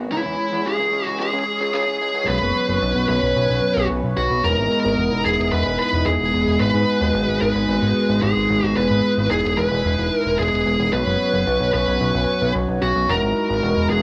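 A distorted, high-gain electric lead guitar sits up front, carrying a dark picked melody through cassette saturation and analog delay in this moody, nocturnal synthwave excerpt at 111 BPM in a straight 4/4. Beneath it, a shimmering chorused pulse-width pad holds sustained chords with a soft attack and plate reverb, opening with a filter sweep in the first 2.3 seconds, while a fat, detuned sawtooth bass anchors the low end through changes like C#m, Bsus2, Emaj7 and G#m7. The whole piece has a homespun cassette character, with a small-room ambience, a thinned low end and a faint mains hum.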